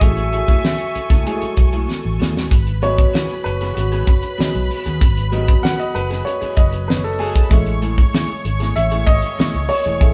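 A steady, straight 4/4 groove at 96 BPM anchors this short cut from a lush 1970s-style soul piece, its mood bittersweet and smooth. The damped 70s drum kit sits up front with a fat snare, tight kick and hi-hat, while the vintage muted fingered electric bass, dark and round with a foam-muted tone, holds the low end between E1 and D#2. A flugelhorn carries the melody on E5 for the opening 1.9 seconds, using light vibrato and scooped notes in a jazz style, before a drum fill leads into the next passage at 2.5 seconds. From there the grand piano, present and of short sustain, takes a solo over G#m7 and later Amaj7#11, after the opening F#m9/A. A rich studio string section, bowed with light vibrato and a smooth top, plays a second line throughout, and a slightly broken-up, compressed electric guitar picks a riff in the background. The band plays live in a single room with a moderate stone reverb of about 1.0 second.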